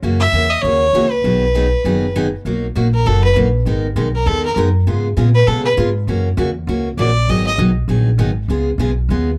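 A swung 4/4 at 199 BPM drives this cheerful, down-home country western swing excerpt in B major, where a woody, pizzicato upright bass and a bright, full-bodied picked acoustic guitar with audible finger squeak support an earthy bowed fiddle, smooth on top with light vibrato, that takes a solo from 2.4 s over chords moving from F#7 through Bmaj7 to C#7, all set up front in a light reverb.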